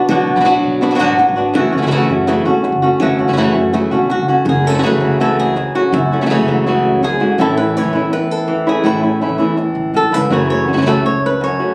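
A dramatic, fiery flamenco excerpt opens with two up-front, fingerpicked flamenco guitars on warm fresh strings, one carrying the melody while the other punches out stabs, over a woody, thumpy pizzicato upright bass that drops out at 11.5 seconds, all heard as if captured on a phone in a stone room with club reverb and compression.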